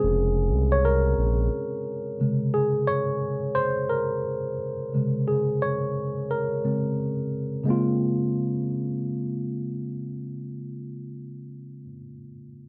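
This introspective, soulful R&B fragment opens on a Bbm9 chord, with a worn, slightly out-of-tune tine electric piano sitting up front alongside a smooth synth bass. The bass blends detuned sawtooth and triangle tones into a mellow, sustained sound with a fast attack, but it is heard only until 1.5 seconds. The electric piano, clean and played through a combo amp with a subtle chorus, carries the accompaniment and takes the lead until 7.7 seconds, when a new section begins. The groove has a swung sixteenth-note feel in 4/4. The piano continues to 12.7 seconds in a dry, close recording with light reverb and a 1970s-style studio character, cut from a longer piece.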